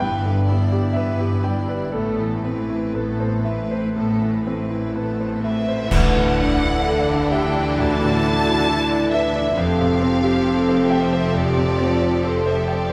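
Moving and bittersweet, this rubato cinematic orchestral cue at 59-68 BPM opens on an up-front concert grand piano with deep bass, a clear violin second line, lush background violas and cellos, and close double basses, as dark cymbals and concert bass drum sound from 1.9 to 7.7 seconds, a distant, expressive violin melody enters at 5.4 seconds, and classical-style French horns join with sustained chords at 5.9 seconds, all bathed in scoring-stage reverb.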